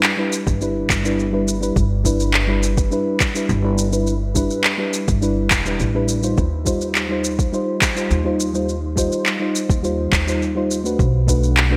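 Bright 1980s-style digital production and a lush hall reverb frame this smooth, blissful sunset chillout excerpt, in which a mellow, round FM electric piano with chorus, delay and shimmer reverb carries the chords from G6 through Eb69 to Bm7, while an upright bass adds woody, thumpy pizzicato from 0.5 seconds, and overdriven electronic handclaps and shaker sit up front with gated reverb over a soft, overdriven electronic kick.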